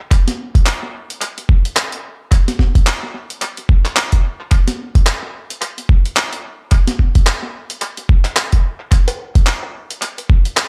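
A swung 16th-note groove at 109 BPM in 4/4 drives this swaggering, playful glitch hop fragment, cut from a longer piece. From 0.1 s, a thumpy, pitched-down electronic kick sits up front alongside a gritty, sampler-style boom bap kit of handclaps, hi-hat and a high-tuned snare treated with analog delay. Both drum parts are compressed and re-recorded in a large room, in a dry, echo-heavy mix.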